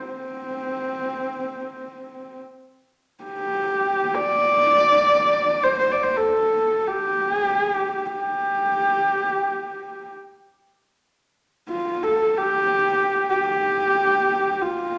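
Proud and galloping in mood, this free-time excerpt of Mongolian traditional music features a single dark, husky horsehead fiddle playing solo from C4 to D5, its horsehair strings bowed up front with soft attacks, vibrato, portamento and an airy, boxy intimacy, all set in a large studio with a wet 1.2-second reverb.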